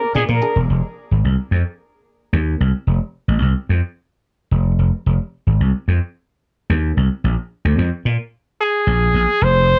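Funk at 110 BPM in a straight 4/4, strutting and energetic, cut from a longer piece with a dry sound. A vintage slap bass, bright, growly and punchy, carries the music from 0.2 to 9.7 seconds under chords moving from Bb7 to F7 and back to Bb. A muted, stringy clav with overdrive and phaser stabs only at the very start, while a warm, jazz-style trumpet with light vibrato and scooped notes sits up front in brief melodic phrases at the opening and again from 8.6 seconds.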